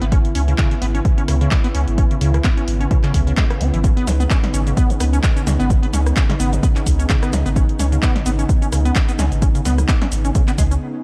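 Acid house at 129 BPM in C# minor, trippy and driving, built on a squelchy, resonant square-wave acid bass riff with overdrive, lush chorus and tape echo, over a deep, thick sub bass with tube saturation and a smooth, detuned sawtooth pad holding a C#m7 chord, all three pumping with sidechain. A punchy, tape-warm electronic kick sits up front while an analog drum machine adds handclaps, hi-hat, rim click, shaker and snare, with a short room on the snare, clap and hats and a swung 16th feel. The dark, warm production is dry, and this cut from a longer piece reaches a break at 10.8 seconds.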